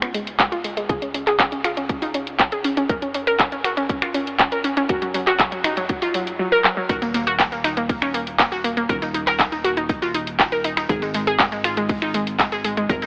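Progressive house at 120 BPM in Eb minor, driving and bittersweet, where a glassy, crystalline wavetable pluck with chorus, tape echo and sidechain pumping spins arpeggios, filter-swept through the build-up, over a tight, sawtooth-edged sequencer bass. A house kit of finger snaps, handclaps and bright, pumping hi-hats sits up front, joined by a punchy electronic kick at 0.4 s. After a drum fill at 6.6 s, the build-up gives way to the drop at 6.9 s, where a very quiet vintage kit adds hi-hat and a medium-tuned snare with a rolled-off top. The whole excerpt carries a lo-fi AM radio colour inside a huge ambient reverb.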